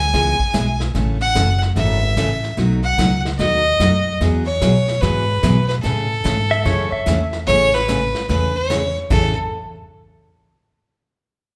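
Cheerful and playful, this swung western swing fragment, cut from a longer piece, puts a clear, intensely bowed fiddle up front carrying the melody over a woody, growly pizzicato upright bass, a bright, full-bodied picked dreadnought acoustic guitar with audible finger squeak, and a vintage brushed drum kit with dark cymbals and a punchy kick. At 6.5 seconds a clean, compressed pedal steel guitar slides in briefly as a second line, played with fingerpicks and volume swells. The band sounds like it is playing live in one large studio room, wrapped in generous reverb.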